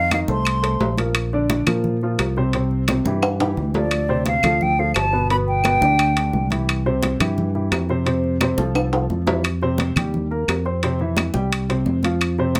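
A moderate studio ambience with a half-second reverb surrounds this short cut from a longer salsa piece. The joyful, danceable groove rests on a round, punchy fingered electric bass and a dark, mellow baby grand piano with long sustain, both up front and playing throughout. Ringing metal-shell timbales sit close and dry at the front, while woody claves and bright, damped, thin-skinned congas stay in the background. An airy, hollow concert flute with vibrato and a crisp attack carries the melody in short phrases, returning at 3.8 seconds over Dm7 and G before the progression continues through C to F. After a drum fill, the music shifts at 9.4 seconds into a new section built on F5, Eb and C5.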